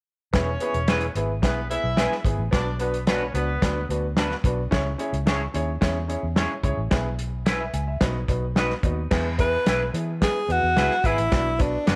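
Light reverb and a small-room ambience frame this short section of a longer piece. It is uptempo 1960s-style soul at 109 BPM in 4/4 with a straight feel, set in E major, and the mood is warm and uplifting. Up front, an acoustic drum kit with dark cymbals, a fat snare and a tight kick drives the groove alongside a round, foam-muted fingered electric bass, while a smooth vintage grand piano with short sustain plays accompaniment over chords moving from E through Bm, C#m, E/B and B. A distant, roomy horn section with light vibrato plays a second line until 3.9 seconds, and a bright, twangy electric guitar through a small, slightly broken-up amp adds picked stabs coloured by analog chorus. At 9.4 seconds, in the closing section, a breathy, close-miked tenor saxophone enters up front with a mellow, whispered jazz-style melody, a soft attack and vibrato.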